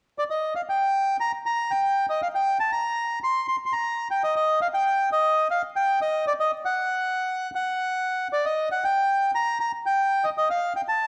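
A lone bandoneon enters at 0.2 s with a reedy, smooth, up-front voice, carrying a tense, passionate tango melody in G minor at a rubato 118 BPM in 4/4, set in a moderate scoring-stage reverb under a dark production with vinyl crackle, in a short passage cut from a longer piece.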